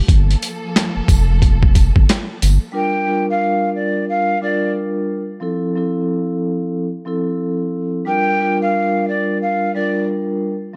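A gritty, compressed sampler-style boom-bap drum kit with a thumpy kick and a medium-tuned snare drives this dark hip-hop excerpt at 90 BPM in G dorian, joined by a deep, saturated sub bass, a jingly tambourine in the background and lush, distant bowed strings holding a Gm9 chord. The beat stops at 2.6 seconds, and from 2.7 seconds a ringing vibraphone with soft mallets and cassette-tape colouring carries Gm7 and Fmaj7 chords. Above it, a breathy, hollow jazz flute sings a mellow melody with slapback echo against light studio reverb.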